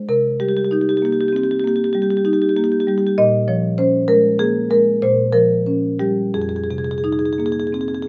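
A solo marimba played with medium mallets carries this brief, flowing fragment of a contemporary classical piece. Its rosewood bars sound woody and vintage, slightly band-limited and placed up front. In a hypnotic, rubato 5/4, it moves through Cm7, Bbm7, Bbm6 and Fm7 across a range from F2 to Eb5 over 8.1 seconds, captured by close, detailed microphones with light reverb.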